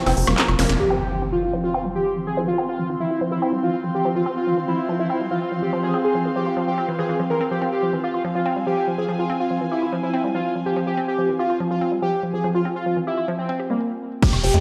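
This hypnotic, driving psychedelic trance passage at 143 BPM in F harmonic minor opens on a short break over an F5 chord, with a drum fill from the techno kit and a burst from the tight, punchy sequencer bass. From 0.6 seconds zap and downlifter effects sound, and at 0.8 seconds an electronic impact lands as the track settles into its main section. A thick, bold, detuned unison lead carries the melody with bright vibrato, phaser and digital delay. Beneath it, a woody, wave-folded pluck plays a percussive riff with chorus and delay. An evolving wavetable pad with a morphing, warbling, 12-bit grit holds sustained chords in the background, while an airy, breathy pad adds soft texture up to 13.8 seconds; both pads, the lead and the pluck pump to the sidechain. After a brief stop, the overdriven kit returns with a cracking snare, smooth hats, handclaps, woodblock and crash, joined by a heavy, up-front kick at 14.2 seconds, the dark sawtooth bass and a final effect, all set in a stone-room ambience that sounds as if played on a big sound system.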